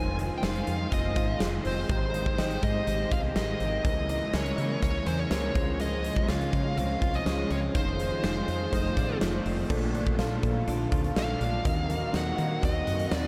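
Romantic and nostalgic, this 1980s-style pop fragment moves at 123 BPM in a straight 4/4. It settles into Bb major from 9.7 s, with an overdriven, dark, smooth lead guitar carrying the melody through ambient delay, while a soft, mellow FM electric piano with chorus and a quiet, shimmering vintage string machine of violins hold the harmony. A clean, compressed guitar picks a riff steeped in lush chorus and delay, a round, woody fretless bass punches beneath, and an up-front arena drum kit brings a punchy kick, bright cymbals, snare and tambourine. A very quiet bowed studio violin section adds a brief vibrato line from 8.7 s to 9.7 s, and the whole dreamy mix is soaked in a vast ambient reverb.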